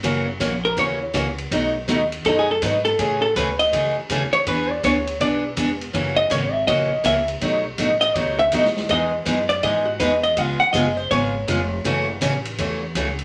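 A bright, picked acoustic archtop guitar with audible finger squeak opens this cheerful, playful western swing excerpt in E major at 163 BPM, alongside a thumpy, woody pizzicato upright bass and a swinging big-band drum kit with punchy kick, medium-tuned snare, hi-hat and ride in a natural big-room sound. At 0.6 s a dark, clean, compressed vintage hollow-body electric jazz guitar enters up front to take the solo over a jazzy progression that moves from F#7 through B7, Amaj7 and E7 to Emaj7, C#7 and F#m7. Wet studio reverb gives the swung 4/4 groove a sense of space.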